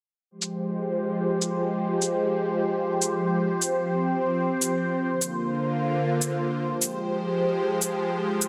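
A dense, heavily limited modern master sits in a moderate plate reverb, giving this short cut from a longer heavy wobble dubstep track a thick, pressing sound. The mood is aggressive and heavy, moving at 150 BPM in 4/4 with a half-time feel and a light swing on the sixteenths, in F minor. A lush supersaw pad carries sustained chords from 0.4 to 8.5 seconds, its detuned sawtooth unison voices bright and up front, shaped by a slow attack, a moving notch, a phaser and a low-pass filter sweep. The harmony steps from Fmadd9 to Csus4 and Bbadd9 before returning to Fmadd9. Alongside it, an electronic, layered shaker sits up front with a tape-warm, produced character, softened by a low-pass filter.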